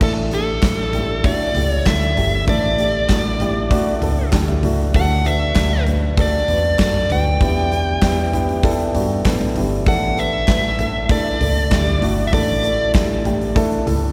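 Piano-driven pop with a hopeful, warm mood, this straight-feeling passage in 4/4 is cut from a longer piece. A dark, smooth lead guitar carries the melody with an overdriven, picked tone and sits up front until it stops at 12.9 seconds. Beneath it, a mellow baby grand piano plays the accompaniment with an intimate, natural character, audible action noise and short sustain, adding a fill between 4.0 and 4.9 seconds. A vintage fingered electric bass gives round, foam-muted, amped low notes, while a huge arena drum kit drives things with a punchy kick, a medium-tuned snare, bright cymbals, hi-hat, toms, crash and handclaps. The harmony moves from Asus4 to D, then Em7, and back to Asus4. A church reverb with a long tail sets the whole band in a resonant, hall-like space.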